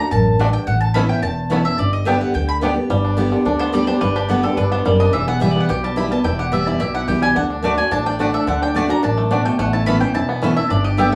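Set in a small room with moderate studio reverb, this driving, rustic bluegrass excerpt in G major moves at 215 BPM, with a bright, picked mandolin carrying the melody over an up-front steel-string acoustic guitar, twangy banjo arpeggios played with fingerpicks and a thumpy pizzicato upright bass, while a second, woody mandolin adds stabs from 0.4 to 2.7 seconds and again from 7.6 seconds as the chords pass from D and Aadd9 through G and Em.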